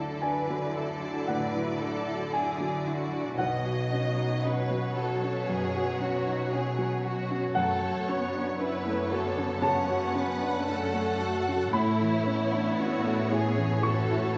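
An up-front baby grand piano with a natural, short-sustained tone carries the accompaniment in this longing, bittersweet cinematic film score excerpt in F# minor, moving slowly at 57 BPM in a rubato 4/4 over Dadd9, Badd9, F#m and A chords. A focused, close violin section sings the melody with vibrato, joined by a smooth, distant second violin line, an expressive viola section with portamento in the background, a smooth, even cello section holding the bass, and a ringing, fingerpicked concert harp playing arpeggios further back. The orchestra sits in a wet recital hall reverb with a 1.5-second tail, as if captured in a church or concert hall.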